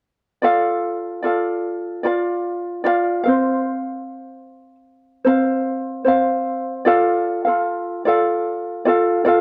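A light, thumb-plucked acoustic ukulele sits up front in this wistful, reflective pop fragment cut from a longer piece, its accompaniment carrying the grain of cassette tape and the moderate spring reverb of a home recording from 0.4 to 9.4 seconds.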